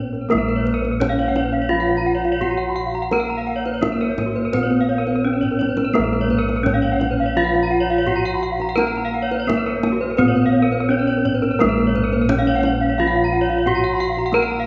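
Balinese gamelan in Bb pelog at 85 BPM, this shimmering, brilliant excerpt from a longer piece sets an up-front bronze metallophone melody, struck with a horn mallet and ringing with the beating of paired tuning, over two arpeggio lines, one horn-struck and airy, the other wooden-mallet. A softer wooden-mallet metallophone accompaniment sits in the background with a tight kendang played with soft hands, while round, beating bossed gongs carry the bass. A short drum fill at 5.4 s leads into a repeat of the opening section at 5.9 s, all heard from further back in a reverberant recital hall.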